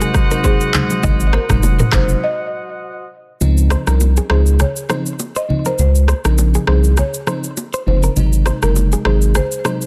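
Dense, heavily limited and dry, this romantic, joyful afrobeats excerpt sets a woody, buzzing marimba melody and a bright, clean direct-recorded guitar riff, both with delay, over a lush, dreamy FM electric piano with a soft pad layer and chorus. A clear, vintage horn section doubles in octaves until 3.1 seconds, while an electronic, tape-warm drum kit with a deep kick and softly clipped snare plays alongside ringing bongos and congas in the background. A thick, saturated sub bass sits up front, and a break at 2.2 seconds gives way to a kickless stretch from 3.4 seconds.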